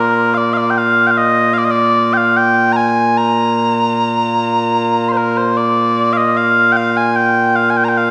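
Ceremonial and proud, this brief excerpt of Scottish pipe music in 3/4 features small bagpipes playing solo and up front, their mellow, sweet, continuous tone carrying vibrato across a range from Bb2 to C6 and bathed in the wet, lingering reverb of a church or concert hall, with a new section arriving at 5.6 seconds before the cut at 8.1 seconds.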